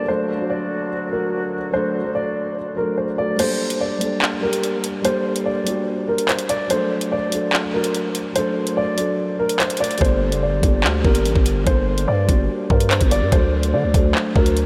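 Drill hip hop at 145 BPM in a half-time feel and G harmonic minor, tense and cold, where a dark, boxy concert grand piano carries the tape-echoed melody over a soft felt-muted upright piano with audible action noise and a clear woodwind section holding sustained chords until the drill kit enters at 3.4 seconds with metallic hats and handclaps, its knocking kick held back until 10.0 seconds when a growling, buzzy 808-style bass arrives, all drenched in a dreamy, huge ambient reverb.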